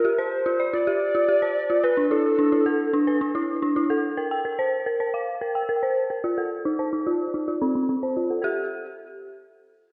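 A warbling, nostalgic lead and an eerie, detuned FM synth bell open this melancholic, glitchy IDM excerpt at 109 BPM in 4/4. The lead's mellow, vibrato-tinged melody ends at 2.9 s, while the bell's inharmonic arpeggios, with their long release, keep ringing through a filter sweep over chords moving from G7(no3) through E5 and C5 to F7, until the harmony drops away at 8.4 s and the bell stops at 8.7 s. A lush two-second hall reverb soaks the mix in a dreamy haze, with chorus and delay on both synths and tremolo on the lead.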